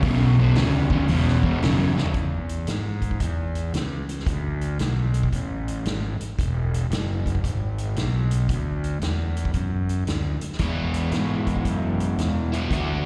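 Gritty and driving, this blues rock and southern rock excerpt swings at 114 BPM in E mixolydian, with a dark, double-tracked crunchy overdriven guitar riff up front from 0.0 to 2.1 seconds and returning at 10.6, a fuzzy, punchy fingered electric bass running throughout, and a vintage drum kit with a punchy kick, medium-tuned snare, hi-hat and toms, with a rolled-off top, dropping a fill at 1.9 seconds, all heard as a live gig through the venue's PA in a recital-hall reverb.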